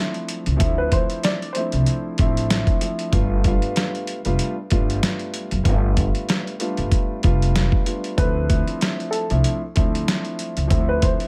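A swung 95 BPM boom-bap hip-hop groove in D dorian sets a dark, moody tone, with a gritty, overdriven sampler-style drum kit of thumpy kick, medium-tuned snare and hi-hat up front; a woody pizzicato upright bass on gut strings; a mellow grand piano with audible action noise, long sustain and a cassette-tape haze; and a short-sustained upright piano melody that appears at 0.8 seconds and returns at 8.2 seconds as the chords move from Dm7 to G7 and back, set in a small room.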